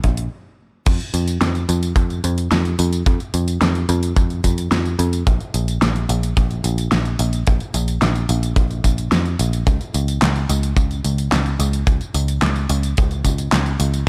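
A kick drum, a pop drum kit and a picked electric bass strike together at the start of this driving, cinematic synthwave excerpt, then halt briefly at 0.3 seconds before the groove resumes at 0.9 seconds. The foam-muted bass sits dark and round in the low register, pumping against the tight, up-front kick. The electronic kit layers a fat, overdriven snare with gated reverb over hi-hat, handclaps, tambourine and crash, in an otherwise dry mix until the kick drops out at 13.4 seconds.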